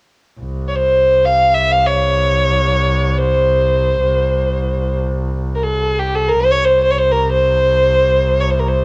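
Moving in free time, this short passage from a Turkish makam ensemble piece in C makam hicaz carries a passionate, stately mood, with tuning set to A4 = 441 Hz. A clear, intense bowed double bass holds a low drone on C2 from 0.4 seconds, and a rich, smooth violin enters at 0.7 seconds with a vibrato-laden melody between G4 and F5, its even tone touched by plate reverb and sitting louder than the bass. Both players stand up front in a small booth-like room, and the home cassette recording lends a tape character to each part.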